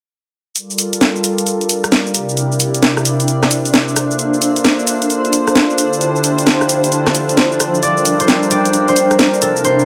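A skippy two-step garage groove swings along at 132 BPM in G dorian. From 0.6 seconds a layered electronic kit of cabasa, hi-hat, rim click and a cracking, tape-tinged snare sits up front with a bouncy, produced feel. Beside it, a smooth, vintage analog pad of detuned sawtooth and triangle tones holds slow-attack chords with a gentle chorus warble, moving through Gm7, C9, Bbmaj9 and Dm11 before returning to Gm7. At 1.6 seconds a granular cloud pad drifts in behind, a blurred, evolving texture with its own reverb and a long release. Near the end, at 7.8 seconds, a thumb-plucked concert harp steps forward with a short, ringing melody, all set in a moderate room reverb in this excerpt from a longer piece.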